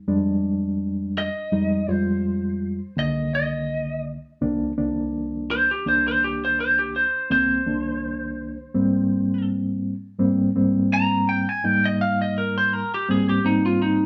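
Smoky and brooding, this short blues excerpt is cut from a longer piece and moves at 83 BPM in C minor, with a light sixteenth-note swing. A mellow, reedy electric piano carries the accompaniment from the opening moment, its clean tone pulsing with a fast tremolo as it sounds through its own built-in speakers. At 1.2 seconds a lightly driven lead guitar enters with the melody, picked and compressed, with a slightly broken-up, twangy edge. Both parts sit up front in a band-in-one-room recording, bathed in a wet studio reverb. The harmony moves from Fm7 to Cm7 at 3.0 seconds and settles on Abmaj7 at 8.8 seconds.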